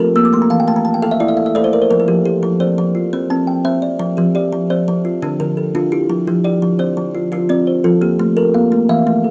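A kalimba fill opens this hypnotic, warm fragment of a longer southern African traditional piece, an mbira-style interlocking cycle in 12/8 at 114 BPM in F major, where two up-front, thumb-plucked kalimbas play arpeggios throughout, one hollow-boxed, woody and ringing and the other a solid board with short, airy notes, over chords moving from Am through F5, C, Dm and F to A5 in a dry, close 1970s-style small-room recording.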